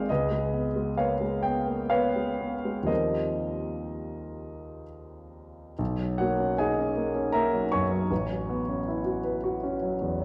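Worn, warbling old cassette tape with a drifting pitch colors this short excerpt of impressionist classical solo piano, heard in a moderate concert hall reverb. A single concert grand, intimate and up front with deep bass, long sustain and audible action noise, moves in rubato 3/4 at 60-79 BPM through lush chords such as Db9 and Eb69 before turning to B major at 5.8 s with Bmaj9 and A69. The mood is hazy and dreamy.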